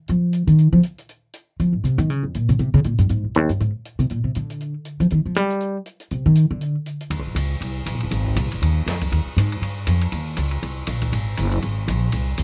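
A fast swing at 239 BPM in 4/4 drives this short cut from a longer small-group jazz piece, warm and swinging in Eb mixolydian. A woody, thumpy upright bass sits up front, plucked from Eb1 to G3 with a solo over the first 7.1 seconds, while an acoustic drum kit with dark cymbals, a boomy kick and a medium-tuned snare plays further back in a small, natural-sounding space. The overall sound is dry and close, keeping the bass's steel-string attack clear through the passage that follows at 7.1 seconds.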